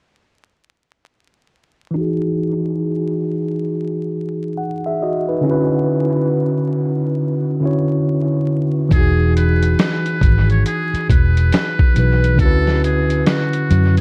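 A buzzy, metal-muted trumpet with light vibrato plays a jazz-style solo from 8.9 seconds in this nostalgic, cosy lo-fi hip hop excerpt, over a clean tine electric piano heard through built-in speakers with cassette tape colour and dub echo from 1.9 seconds, joined alongside the trumpet by a dark, round, foam-muted electric bass and a thumpy, pitched-down sampler-style drum kit, in a mix heavy with echo and vinyl crackle.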